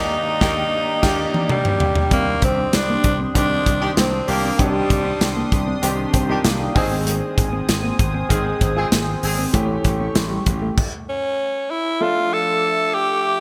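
A band accent with a raspy tenor saxophone up front, a polished grand piano, distant punchy horn stabs and a gritty, overdriven slap bass opens this romantic, nostalgic 1980s-style pop excerpt at 97 BPM, as a pumping studio drum kit brings a fill, a detuned sawtooth pad holds evolving chords in the background with chorus and phaser, and a very quiet, twangy clean electric guitar riff joins at 2.1 s; after a band stop at 10.8 s, the delay-tinged saxophone returns over piano and pad in a bright, lush hall.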